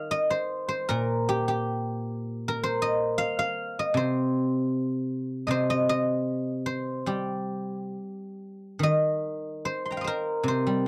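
Elegant and longing, this short cut from a longer piece of Chinese traditional music features a solo guzheng played with fingerpicks, its silvery, ringing tone placed up front across a span from Bb2 to C6. The rubato phrasing moves freely over a 4/4 frame, shifting into a new section at 8.8 seconds before the clip ends at 10.9 seconds. The dry, close sound of a 1970s-style studio carries just a touch of light reverb.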